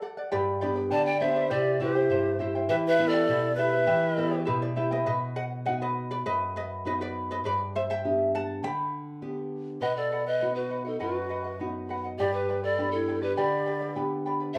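In a straight 2/4 feel, this festive yet melancholic Andean folk excerpt sets a shimmering, fingerpicked charango with double strings over a dark, boxy nylon-string guitar, while a breathy pan flute with warm vibrato and a soft attack carries the melody over a crisp, chiffy quena second line until the winds drop out at 4.4 seconds, the charango takes a solo from 5.1 seconds, and the winds return at 9.8 seconds, all within the wet, roomy sound of a band playing live together.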